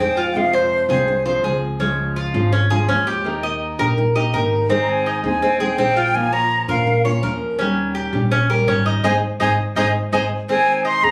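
Captured on a phone in a room with a club-like reverb, this sunny, danceable excerpt of Cuban son and guajira sets an up-front, metallic Cuban tres picking double-string arpeggios over a fingerpicked classical nylon-string guitar and a woody, thumpy pizzicato upright bass on gut strings. An airy jazz flute with a soft attack and expressive vibrato sings a brief phrase at the start, then returns at 4.8 seconds to carry the melody. The full band hits an accent from 9.0 to 10.5 seconds.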